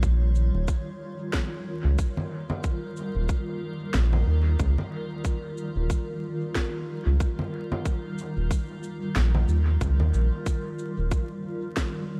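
Vinyl crackle sits over a dry recording in this peaceful, spacious ambient dub excerpt, which moves at 92 BPM in 4/4 with a 58% swing on the sixteenths and rests on a single Eb9 chord in Eb mixolydian. A round, deep analog bass with tube saturation sits up front, its dark, sustained tones blending sawtooth and sine with a fast attack, and it drops out at 11.1 seconds. Beside it, a tight electronic kick drum with a tape-warm character, re-recorded in a large room, is also placed up front. Quieter electronic shaker, woody snare and congas, likewise re-recorded in a large room, carry a dub echo. Further back in the mix, a granular cloud pad holds sustained chords from Eb3 to Db5, its blurred, evolving, full-bodied sound built from unison sines with a moving notch, a slow attack, a long release and its own reverb, and it lingers until 12.2 seconds.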